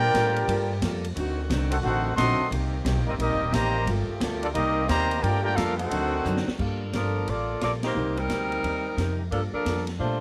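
Swinging 4/4 at 177 BPM drives this brassy G minor big-band excerpt. A tight, warm trumpet section with light vibrato carries the melody over a brilliant trombone second line, a mellow, distant saxophone bed, a full-bodied picked dreadnought acoustic guitar, a woody pizzicato upright bass and a natural-sounding drum kit with a high-tuned snare and punchy kick. After a drum fill, a polished grand piano enters at 6.6 s, and a smooth, up-front saxophone section takes over the melody at 6.9 s, all in light studio reverb.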